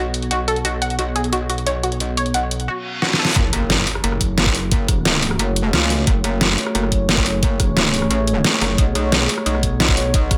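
A metallic, saturated wobble bass sits up front from the start of this tense, aggressive dark technical drum and bass excerpt at 177 BPM in F# minor, joined by a bright, detuned analog pluck playing arpeggios with dub echo until 3.3 seconds, a moody sawtooth ambient pad holding sustained chords with chorus and reverb, and a dubstep kit of hi-hat, rim click and deep snare under a filter sweep. A background reverse cymbal and drum fill build into the drop at 3.4 seconds, where an impact hits and a knocking electronic kick enters, driving the section over an F#m chord before a return to Bsus2.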